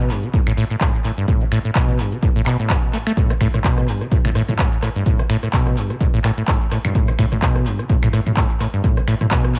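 A steady pulse in 4/4 carries a gentle 16th-note swing, giving this trippy, driving acid house fragment, cut from a longer piece, a loose forward lean. An analog drum machine runs throughout, scattering finger snaps, handclaps, metallic hi-hats, rim clicks, shaker and toms, its tape echo and small-room re-recording adding a slightly boxy haze. A dry, punchy electronic kick sits up front from 0.3 seconds to 9.4 seconds, anchoring the groove. Over it, a squelchy sawtooth acid bass plays a riff with a resonant filter pluck, fast attack and quick decay, roughened by vintage 12-bit sampler grit and trailed by tape echo. The whole mix leans heavily on echo under a light reverb, so the bass and drum-machine hits smear into a hypnotic, repeating loop.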